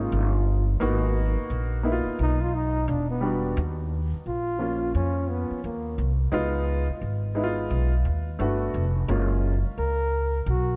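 A swung sixteenth-note groove in 4/4 carries this smoky, nocturnal jazz-hop fragment, cut from a longer piece. A dark trombone leads with light vibrato, scooped notes and a smooth top, its melody touched by delay and featured as a solo through the opening 3.6 seconds, while a warm upright piano with long sustain supplies jazzy chords, opening on a rootless voicing, until 9.5 seconds. Beneath them, a woody pizzicato upright bass sits up front, all under light reverb and a studio ambience.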